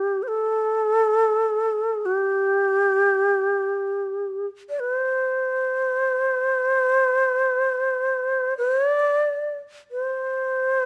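In free time, this austere, calm passage of Japanese traditional chamber music, cut from a longer piece, features a solo bamboo shakuhachi played up front with an airy, mellow tone, tongued notes and vibrato, captured by close, detailed microphones in a dry room across its 10.9 seconds.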